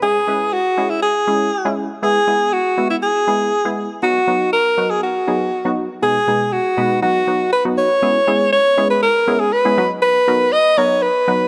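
Energetic and confident, this pop cut moves at 120 BPM in a straight 4/4, set in C# dorian and taken from a longer piece. A clear alto saxophone carries the solo melody up front with vibrato and a touch of delay, while a crisp, detuned wavetable chord stab with a fast-attack filter pluck supplies the accompaniment further back through chords such as C#m, E and B. At 8.0 s the music arrives at a drop, with the harmony moving to C#m7 and then B under light reverb and studio ambience.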